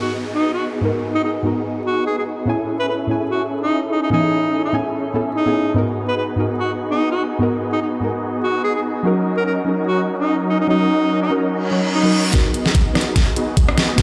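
Bittersweet and lush, this future bass excerpt at 146 BPM in G# minor sets a clear, lightly vibrato alto saxophone melody over huge, detuned supersaw chords and a soft, round, chorused pluck, all pumping to the sidechain through G#m7, Amaj7 and D#m7/F#, with electronic sound effects framing the start and a reverse cymbal at 11.6 s leading into a half-time build-up at 12.3 s, where a knocking, overdriven kick, a pop kit with deep snare, hi-hat and rim click, and a barely audible 808-style bass enter under a filter sweep on the supersaws, all heard through a stone room's reverb.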